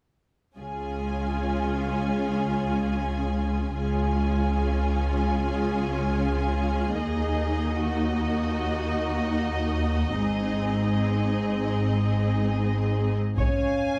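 Heard through a reverberant recital-hall ambience with the spaciousness of a church or concert hall, this short cut from a longer cinematic orchestral score carries an adventurous, triumphant mood. From 0.6 seconds a string body unfolds in free time: smooth, even violins carry a second line in their upper register, while close, expressive violas with soft attacks and gentle portamento fill in the accompaniment. Beneath them, cellos and woody double basses, all bowed with vibrato, lay down a lush, resonant bass as the harmony moves from Db to Ebm and on to Ab. At 13.4 seconds, as the chord returns to Db, new voices join the strings. A focused, rich violin section sounds the melody on a high Ab, an up-front French horn section holds a sustained chord with light vibrato, and a taiko ensemble strikes in with heavy sticks. The fragment breaks off just after this arrival.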